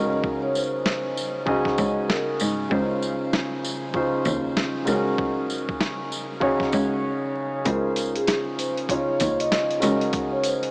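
A dark, mellow concert grand piano sits up front with a deep bass and long sustain, carrying Gb69/Db and Dbmaj9 chords through a nostalgic boom-bap hip-hop groove at 97 BPM in 4/4, swung on the 16ths and tuned to A4 = 436 Hz. A soft-mallet vibraphone with a metallic ring and tape echo plays the melody until 2.4 seconds, then returns at 7.7 seconds, while a distant, smooth bowed cello holds the bass with vibrato. Underneath, a gritty, pitched-down sampler-style kit with a thumpy kick, medium-tuned snare and hi-hat joins at 0.2 seconds, followed at 0.6 seconds by a jingly, saturated tambourine, all soaked in a huge dreamy reverb with vinyl crackle and a small-speaker sound.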